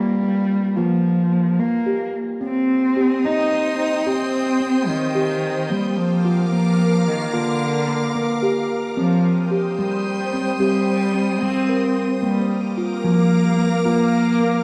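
A bowed cello carries the melody up front, its woody, dark tone colored by vibrato and trailed by shimmer reverb. Alongside it, a steel tongue drum struck with firm rubber mallets plays ringing, airy arpeggios from the very start. At 3.2 seconds a soft, organ-like pad enters with sustained chords, its detuned sine tones given ensemble chorus, a slow attack and a long release. This gentle, hypnotic piece of meditative world music moves at 73 BPM in a straight 6/8, counted in dotted quarters, in C minor. The harmony circles between C minor and B-flat, and a new section begins at 9.0 seconds. Cut from a longer piece, the recording sits in a lush scoring-stage reverb with the soft grain of cassette tape.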